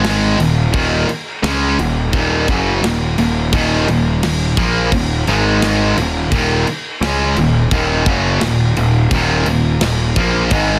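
Dark and relentless, this heavy metal excerpt in Eb minor moves at a straight 86 BPM in 4/4, its double-tracked, overdriven electric guitar riff sitting up front from the low Eb2 range as the chords shift from Ebm to Ab5 at 5.3 seconds and back to Ebm at 6.0 seconds. A growly, fuzz-laden picked bass plays beneath in the Eb1 to Db2 register, also overdriven and up front, while a tight acoustic drum kit with a tight kick, medium-tuned snare and bright crash cymbals drives along in a studio room. The excerpt runs about 10.8 seconds and carries a dense, heavily limited modern master.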